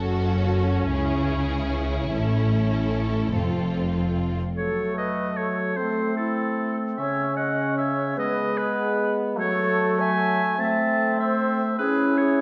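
Adventurous and determined, this cinematic excerpt moves at 149 BPM in a straight 3/4, centred on F# dorian. For the first 4.4 seconds a lush, bowed string orchestra builds up: two violin sections carry the melody and a second line with focused vibrato, clear violas fill in the accompaniment, and cellos join a rich, up-front double bass section on the bass. At 4.6 seconds the strings give way to winds and brass, with a clear, smooth-topped solo oboe and an airy silver flute sharing a second line while a mellow, up-front French horn section sustains chords. A distant, roomy trumpet section punctuates the texture with stabs until the close at 12.4 seconds. The harmony moves through F#m, C#m, A and F before shifting to Am, a brief unharmonised moment, and G#m, all set in a dark production with a wet scoring-stage reverb.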